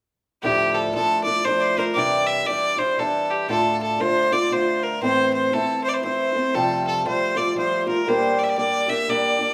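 Celtic folk in D minor at 118 BPM, driving, dark and lively in 3/4 with a swung eighth-note feel, cut from a longer piece and running from 0.4 to 9.5 seconds. A single bowed fiddle carries the melody up front with a nasal, earthy tone and light vibrato, while a fingerpicked acoustic archtop guitar accompanies with a boxy sound, fresh strings and audible finger squeak. The two play live together in a large studio with a wet reverb, moving through Dmadd9, Cadd9, Dm, Am, Fadd9 and Gm.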